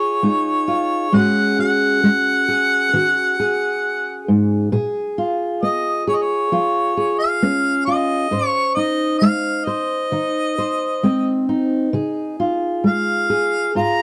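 Heartfelt and tender, this short acoustic folk-pop ballad excerpt pairs a warm, jazz-tinged harmonica melody, sung out with light vibrato and scooped notes, over a dark, fingerpicked steel-string acoustic guitar, both up front in a dry, close 1970s-style studio sound with a small room ambience.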